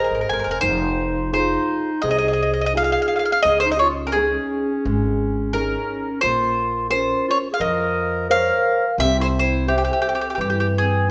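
Italian folk serenade in F minor at 86 BPM, passionate and romantic, moving in 4/4 with a gentle swing on the eighths. A mellow, picked mandolin with doubled strings carries the melody up front, while a soft-attack clarinet in classical style sings a warm second line beneath it, and a dark, full-bodied nylon-string guitar, thumb-plucked, supplies accompaniment over growly pizzicato upright bass. All four play throughout this 11.1-second cut from a longer piece, wrapped in moderate recital-hall reverb with a rounded, subdued top end, as the harmony passes through Fm7, Dbsus2 and Bbmadd9 before arriving on C.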